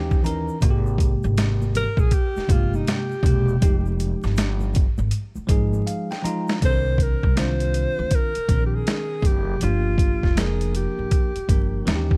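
A gritty, compressed boom bap drum kit sits up front in this nocturnal, smoky jazz-hop excerpt, its pitched-down sampler sound built on a thumpy kick, a medium-tuned snare and swung hi-hats. Beneath it, a woody upright bass with dark gut strings is plucked pizzicato. A bell-like tine electric piano plays chords through its built-in speakers with a bright, clean tone, adding short fills along the way. A breathy alto saxophone enters at 1.8 seconds and solos through the first half, close-miked with vibrato and a soft subtone in a jazz style. In the background, an egg shaker and congas played with soft hands add small-room percussion until 6.6 seconds, and a drum fill near 5.9 seconds leads into a second section that moves from Cm9 to Gm7 under studio reverb and a haze of vinyl crackle.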